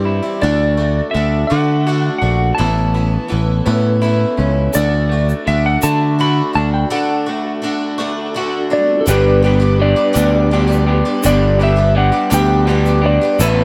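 A light, small-room sound frames this jangly, open-road excerpt of folk rock and heartland rock, moving at a slow 56 BPM in a straight 6/8 in G major. The up-front, amped electric bass anchors a boxy, shimmering, octave-doubled twelve-string acoustic guitar, a slightly broken-up lo-fi riff from an electric guitar through a small old amp, and a very quiet, flute-like tonewheel organ turning through a slow rotary speaker. A dark, compressed lap steel carries the slide melody with volume swells and analog delay from 0.4 seconds, while a woody upright piano and a grainy, saturated tube shaker join at 4.7 seconds, before the harmony settles on G at 9.1 seconds.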